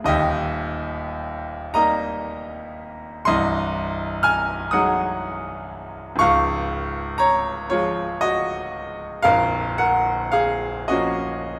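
Romantic classical nocturne for solo piano, tender and nostalgic, unfolding slowly at 34-42 BPM in dotted quarters in 6/8 with free rubato. A bright, brilliant grand piano sits up front with a natural tone, ranging from Bb0 to F6 and settling into Db major from 3.3 s as the harmony moves from Eb through Ab7/C and Db to Bbm at 9.3 s. A moderate scoring-stage reverb adds gentle space around this brief excerpt from a longer piece.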